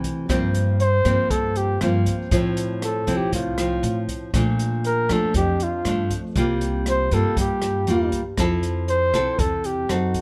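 A bossa nova groove at 119 BPM in straight 4/4 sets a romantic, sophisticated mood in F major, with a dark, smooth open jazz kit marking time on hi-hat, rim click and a boomy kick from the start. Beneath it, a pizzicato upright bass with a woody tone moves through its low register, while a full-bodied, fingerpicked nylon-string guitar sits up front with the warm character of old strings and a deep classical sound. At 0.8 seconds a mellow flugelhorn enters with the melody, its soft attack, smooth top and vibrato carrying a jazz-style solo voice placed prominently in the mix. The chords drift from C7sus4/G through Fmaj7 and Bbmaj7 before returning via C7sus4 to Fmaj7 at 8.4 seconds. Close, detailed microphones and little reverb give this short cut from a longer piece an intimate, dry presence.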